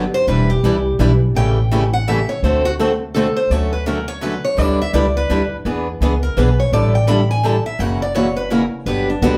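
Swinging in 3/4 at 168 BPM with a lilting eighth-note feel, this lively fragment of acoustic string swing in the jazz manouche tradition settles into D major from 3.5 seconds after opening on a turnaround of Em7, A7 and D7. A woody, thumpy upright bass plays pizzicato up front, its dark low notes anchoring the harmony as it moves through Dmaj7, G6, E7 and F#7 before landing on Gmaj7. Two picked guitars carry the accompaniment: a bright, boxy steel-string parlour guitar with fresh strings and audible finger squeak sits up front, while a swing-style acoustic guitar adds its own bright, boxy picked accompaniment a little further down in level. Above them, a second steel-string parlour guitar with a mellower tone takes the solo line from 0.1 seconds, ranging up to B5 through the whole passage. A club reverb lends the ensemble the sense of a small room heard from further back, and the piece is cut from a longer performance at 9.4 seconds.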